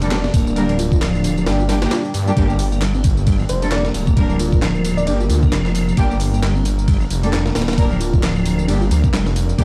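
Gritty and funky, this breakbeat cut moves at 133 BPM in 4/4 with a swung sixteenth feel, sitting on a G minor chord throughout. A compressed, pitched-up breakbeat kit with a thumpy kick and high-tuned snare drives the groove with hi-hat and ride, while a quieter electronic garage kit layers handclaps, tambourine and bright hats beneath it. Up front, a thick, menacing detuned saw bass growls in the low register, and a deep, evolving ambient pad holds sustained chords in the background, pumping against the beat with chorus and its own reverb. A distant, reedy string section with gut-string tone plays delayed stabs, and from 0.3 seconds a lightly overdriven tonewheel organ riffs with key click, fast rotary speaker and 12-bit sampler grit. Between 3.5 and 5.2 seconds a sparkling, bell-like FM electric piano adds a brief melody filtered through an AM-radio, cassette-tape character and delay. 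The production is dark and lightly reverberant, dusted with vinyl crackle, in what sounds like a section lifted from a longer track.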